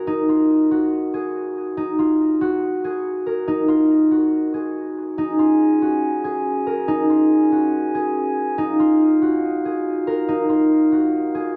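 Cold and dark, this half-time hip hop fragment moves at 141 BPM in 4/4, cut from a longer piece. A concert harp carries the melody throughout, sitting up front with an acoustic, thumb-plucked, ringing tone that stays between Eb4 and Bb4 and trails off into dub echo. At 5.2 seconds a glass harmonica enters alongside it with sustained chords, moving from Db69 to Ebsus2 at 8.6 seconds. Its sound is glassy, pure and ethereal, with a slow attack and a beating shimmer, captured close and dry yet full, and it sits further back than the harp. A moderate spring reverb and an echo-heavy mix give the short passage a dark, spacious air until it breaks off at 11.6 seconds.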